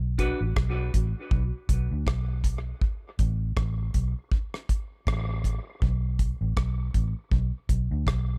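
This short excerpt is set in a small room's ambience with an echo-heavy mix that gives it a spacious, meditative air. It is dub reggae in B minor at 80 BPM in 4/4, with a 56% swing on the sixteenth notes. A vintage muted electric bass, played with the fingers, sits up front with a dark, round, foam-muted tone pushed through an amp, holding low between A1 and D2 from the very start. A damped 70s drum kit joins at 0.2 seconds, dry and airy with a tight kick, rim clicks and hi-hat, its polished sound softened by a rolled-off top. Bass and drums together carry the whole passage, which is cut from a longer piece and runs to about 8.4 seconds.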